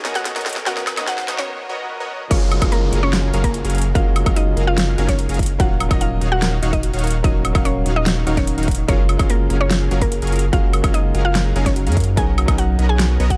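A short build-up opens this lush, bright half-time future bass cut at 146 BPM in F# major, with a fill from an overdriven big-room dance drum kit of huge snare, metallic hats, woodblock and crash, a background riser, swell and downlifter, and a woody, round mallet-like synth pluck carrying the melody with chorus and dub echo over a smooth, vintage concert grand piano and punchy detuned supersaw stabs with a cassette-tape tint, the pluck, piano and stabs all pumping against the sidechain, until the drop at 2.3 seconds brings in a punchy overdriven electronic kick, a deep, thick saturated sub bass up front, and a very quiet, tine-like thumb-piano-like pluck tracing arpeggios, all set in a digital ambience over chords moving through Bmaj7, F#maj7 and D#m7.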